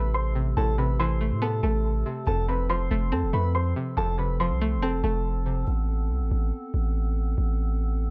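Moving in a half-time 4/4 feel at 141 BPM, this short hip hop cut from a longer piece sits in A minor, tuned to A4 = 438 Hz, and carries a tense, cold mood. A deep, sine-toned 808-style bass with a fast attack holds long decaying notes up front through the whole passage. A dark grand piano, boxy and mellow with long sustain, carries the melody in a high register through a low-pass filter and digital delay. Beneath it, a string-like resonator pluck adds twangy, bright accompaniment with a sawtooth edge, a noise layer, a filter sweep and chorus. A soft pipe organ on stopped flute stops sustains hollow chords in a baroque voicing, with audible chiff and tremulant. The harmony moves from Amadd9 to F at 2.3 seconds. The piano and pluck stop around 5.7 seconds, when Amadd9 returns and the organ and bass carry on alone in a dark, warm-sounding studio ambience.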